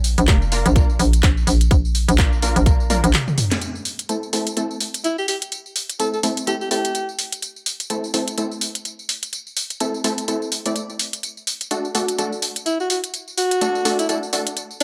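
Bass house at 126 BPM in A phrygian, bouncy and swaggering, with a swung sixteenth-note feel and tuning set slightly below standard pitch. It opens on a hollow, knocking FM bass with sidechain pumping, up front, alongside a garage drum kit of cracking snare, warm hats, handclaps, tambourine and toms that runs the full length of this excerpt. At 0.3 seconds a tight electronic kick, also up front, comes in together with a bold orchestra-hit-like synth stab, detuned sawtooth layers with a noise layer and a bright pluck, carrying 12-bit sampler grit, tape echo, its own reverb and sidechain pumping. The kick drops out at 2.8 seconds, a drum fill begins, and the bass falls away at 3.1 seconds as a break leads to a band accent. The harmony then moves from Bb to A minor at 3.6 seconds, and a filter sweep on the stab runs to the end, with the chord shifting to D later on. A clear alto saxophone with vibrato and a soft attack plays jazz-style solo phrases through tape echo, first at 5.0 seconds and again near the close, all set in light reverb.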